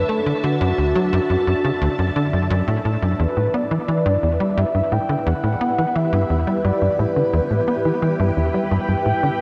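Ambient, sequencer-driven space music at 87 BPM in 4/4, expansive and hypnotic, cut from a longer piece, where a tight, punchy sawtooth sequencer bass riff with a nasal filter pluck drives up front beneath lush sustained chords from a vintage full-ensemble string machine with ensemble chorus and shimmer reverb, while a round, horn-like synth lead sings a melody with vibrato, chorus and analog delay, all bathed in a huge ambient reverb and cassette tape tone as the harmony moves from Dadd9 to Em7 at 3.2 s, settling into E minor.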